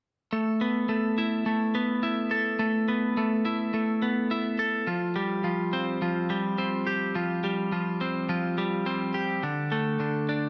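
Melancholic yet cathartic, this short rock excerpt in a straight 4/4 features a lone twelve-string electric guitar playing clean, picked arpeggios from 0.3 to 10.5 seconds, its bright, twangy, compressed tone sitting up front and trailed by analog delay. The chords move from Asus2 to Fsus2 and on to D5, cast in a dark production and bathed in a wet recital-hall reverb that lends the lines a lingering, spacious halo.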